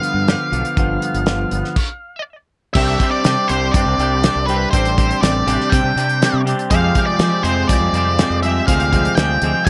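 Lightly reverberant, this jangly, upbeat indie rock excerpt at 122 BPM is driven by a cloth-damped, thuddy drum kit with a fat snare, tight kick and dark cymbals. An up-front octave-fuzz lead guitar sings its melody through distortion and slapback echo over an overdriven semi-hollow guitar riff, a bright, twangy electric guitar tucked behind with ensemble chorus and slapback echo, and a growling fingered bass with overdrive. A stop from 1.8 to 2.8 seconds clears the way as the G7 opening gives way to Csus2 and later Fmadd9, and a very quiet, hollow, flute-like pad with slow-attack sustained chords enters at 2.7 seconds.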